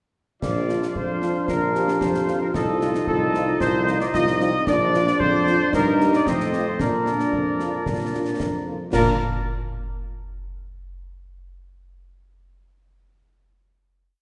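A warm, tight trumpet section sits up front with the melody in this short, rousing military-style march for wind band, played at 113 BPM in a straight 2/4 in Bb major. Beneath it, a present tuba plays bass on the beats and sustained bass, while a clear trombone section holds sustained chords in the background and a distant, roomy woodwind section with light vibrato adds a second line of sustained chords. A dark, punchy French horn section with a smooth top enters at 0.7 seconds, very quietly playing after-beat chords and sustained chords, and a mellow solo euphonium offers a very quiet counter-melody until 8.6 seconds. Concert snare drum, clash cymbals and concert bass drum sound close and dry, with a marching snare over a bass drum on the beat and dark cymbals. The festive phrase moves through a simple progression from Bb to F7 and back, closing on a final chord from 8.9 seconds. A wet scoring-stage reverb gives the feel of a church or concert hall, with a top end that stops at 10.7 kHz.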